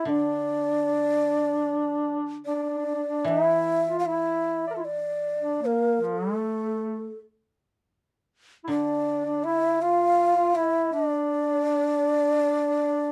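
A breathy, hollow shakuhachi leads this solitary, meditative fragment of traditional Japanese chamber music, carrying the melody up front with vibrato and a crisp, chiffy attack, while a roomy duduk with scooped notes and its own vibrato traces a second line beneath it from the very start. A dry, woody koto played with fingerpicks adds low accompaniment from 0.1 s to 10.9 s, all in D hirajoshi at a rubato 72-82 BPM in 4/4. Light reverb and a dark, warm production frame the music, which moves into a new section at 3.3 s.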